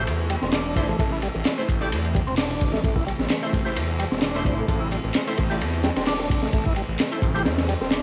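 Breakbeat at 130 BPM in A minor with a swaggering, raw feel, built on a crunchy, punchy breakbeat kit and a swirling, thick phased saw bass, with a lightly overdriven tonewheel organ riff through slow rotary speaker, bold orchestra-hit-like synth stabs, a metallic overdriven garage kit with handclaps, very quiet bongos and congas, and a faint warbling analog pad, all taped to cassette in a small room as the kick drops out at 7.5 seconds.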